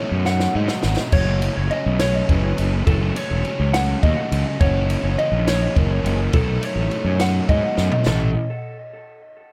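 An echo-heavy studio mix opens this playful, intricate excerpt of math rock and midwest emo in a straight 6/8, where a dark, clean, fingered electric guitar spins arpeggios with subtle chorus and tape echo, a bright, double-tracked overdriven guitar picks a riff in the background, an up-front fuzz bass growls beneath, and a compact cocktail kit with a punchy kick, high-tuned snare and dark cymbals plays fills at 0.3 and 7.8 seconds as the chords move from B7 through F#m and F#7 and back to B7 before landing on A at 8.1 seconds.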